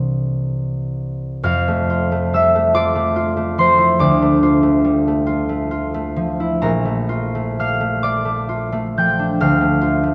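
Serene and graceful, this classical excerpt for solo concert harp drifts in 6/8 at a slow, rubato 31-49 BPM in F major, tuned to A4 = 439 Hz. The fingerpicked harp sounds up front and ringing, spanning Bb1 to G6 through lush chords such as Fmaj7 at 1.4 seconds, Dm9 at 4.0 and Bbmaj7 at 6.6, before settling on Dm. A wet concert hall reverb surrounds it, while the worn cassette tape adds a warbly pitch drift to the whole recording.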